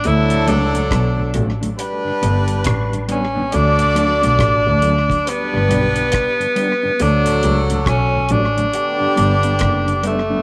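A clear tenor saxophone with light vibrato carries the melody from the very start of this laid-back, sunny roots reggae excerpt, its distant, roomy tone trailed by tape echo over a deep, dry drum kit of hi-hat, tight kick and rim click. A pop-style horn section adds a second line with its own echo, while an up-front, focused bowed double bass anchors the low end. A very quiet, round tonewheel organ through a rotary speaker hums beneath a dark, clean fingered electric guitar that enters at 0.5 seconds and sits in the background, as the harmony sways between D and G under a moderate spring reverb.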